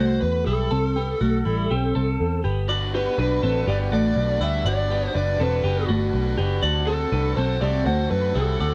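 A breezy, nostalgic indie pop fragment opens with a dark, overdriven lead guitar through a small cranked amp carrying the melody, a clean, compressed twelve-string electric guitar playing phaser-tinged arpeggios, and a round, foam-muted picked bass sitting up front. At 2.7 seconds a quieter overdriven electric guitar joins as accompaniment, while the harmony moves from C6 to Gmaj7 and then D7. Slapback echo on the lead and twelve-string guitars, along with the dry, close 1970s-style studio sound, gives the piece an intimate, vintage feel.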